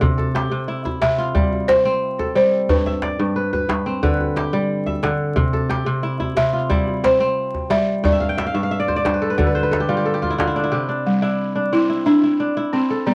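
A straight, flowing 4/4 groove carries this West African string and xylophone piece, where a ringing, fingerpicked kora lays crisp arpeggios up front and adds a fill at 8.1 seconds, a tight, cracking djembe drives the pulse until 10.6 seconds, and a woody, buzzing balafon played with soft rubber mallets carries the melody from 1.0 second, the whole recording coloured by moderate studio reverb and the warbling pitch drift and crackle of worn old tape and vinyl.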